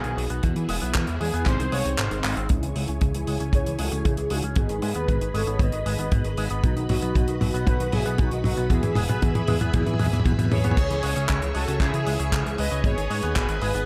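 A bold, warbling synth-brass melody rides over lush string-machine chords, twangy envelope-filtered guitar arpeggios with sampler grit and delay, a fat, saturated analog bass and a dry, damped drum kit with dark cymbals, handclaps and toms, joined at 0.4 seconds by a tight, up-front kick that briefly drops out before a drum fill ushers in filter sweeps on the strings and guitar at 2.5 seconds, giving this danceable, nostalgic italo disco fragment its steady, straight pulse.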